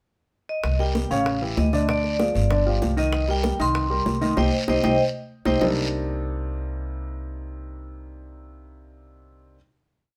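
A dark, ringing vibraphone struck with medium hard mallets leads this short, fiery Afro-Cuban jazz piece, entering near the end of a brief pickup and spinning a motif-based melody with a slow motor vibrato. Beneath it, a woody, thumpy upright bass with gut strings plays an up-front pizzicato tumbao that anticipates the chords, while an intimate upright piano with audible action noise lays down a montuno in octaves. The percussion is textured: tight, high-tuned bongos in steady eighths with hand bell, raspy guiro, and thick-skinned, band-limited congas sitting in the background with slaps and open strokes. The band hits an accent from 4.4 seconds as a drum fill drives into the close, and the vibraphone and percussion stop at about 5.6 seconds. Bass and piano carry on through a sustained final minor ninth chord, their sound framed by light reverb in a sophisticated, compact arrangement.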